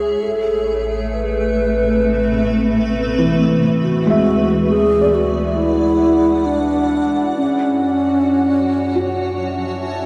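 Ambient and unhurried, this spacious, melancholic excerpt, cut from a longer piece, drifts in a slow 4/4 through the chords Amadd9, D and F#m7. A hollow, airy alto flute carries the melody, its tongued notes and gentle vibrato heard close-miked and trailed by shimmer reverb and tape echo. Alongside it, a cloudy, blurred granular pad sits up front with slow-attack, detuned unison chords that keep evolving under a moving notch. A felt-muted upright piano adds soft, vintage-toned arpeggios, also bathed in shimmer reverb and tape echo. Lowest of all, a round sine sub bass fades out across the full 10.1 seconds, while a huge, wet reverb wraps the dark production.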